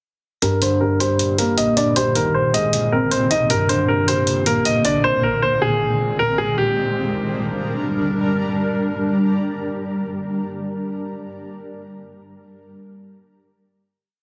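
Hard-hitting and menacing, this short trap piece in G phrygian at 156 BPM in a half-time feel opens as a filtered breakdown where a clear concert grand loops a delayed, low-passed melody over a mellow felt-muted upright piano's pedal-note eighth-note arpeggio with audible action noise, while a gritty, up-front electronic hi-hat drives the half-time beat and a blurred, detuned granular pad enters at 1.3 s, all set in a recital-hall reverb and a dense, heavily limited master, before a filter sweep gives way at 6.6 s to a final G minor chord that the pad sustains until 10.1 s.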